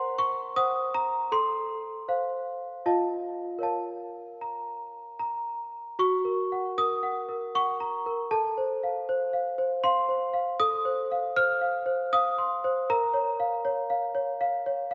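A worn celesta opens this classical lullaby alone, its bell-like, delicate tone slightly out of tune and struck with medium felt hammers. The mood is eerie and wistful, moving at an unhurried 78 BPM in a straight 3/4 lilt in B-flat minor, and the passage is cut from a longer piece. The instrument sits up front with a sweet, somewhat boxy character, while a wet concert hall reverb with a long 2.2-second tail surrounds it. The harmony settles onto B-flat minor before turning to a G-flat chord at 6.0 seconds, where a new section begins. It comes back home to B-flat minor at 12.9 seconds, and the celesta plays on until the excerpt ends at 14.9 seconds.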